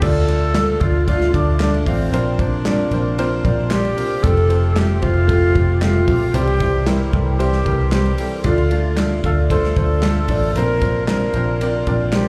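Piano-driven pop with an uplifting, warm mood, cut from a longer piece and heard as a live club gig through the venue's PA, where a breathy, chiffy tenor recorder carries the expressive melody over a clear, woody, slightly detuned upright piano (both with slapback echo), a very quiet lightly overdriven tonewheel organ on slow rotary holding chords, a dark, round, foam-muted electric bass sitting up front, a punchy acoustic drum kit with bright cymbals, and crisp group handclaps in the background from 0.6 seconds, all moving through Dm, Bbadd9, Fadd9 and C.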